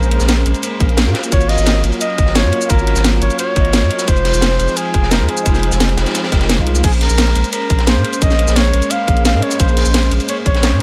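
This lush, melancholic liquid drum and bass excerpt in Bb minor runs at 174 BPM in a straight 4/4. It opens with a flugelhorn carrying the melody in a jazz style, its tone warm with light vibrato and scooped notes, trailed by dub echo. Beneath it, a bell-like tine electric piano plays bright, clean accompaniment through ensemble chorus and tape echo. A smooth, detuned sawtooth pad holds sustained chords in the background with chorus and sidechain pumping, and a deep, thick, saturated sub bass sits up front. A garage kit with a cracking snare drives the groove from the start, joined at 0.1 seconds by a gritty breakbeat kit with dark cymbals, a high-tuned snare and a rolled-off top, and at 0.8 seconds by a tight, layered electronic kick. The harmony moves from Bbm9 through Ab13sus4 and Fm7, and the phrase repeats at 6.8 seconds in a dry, close-sounding mix.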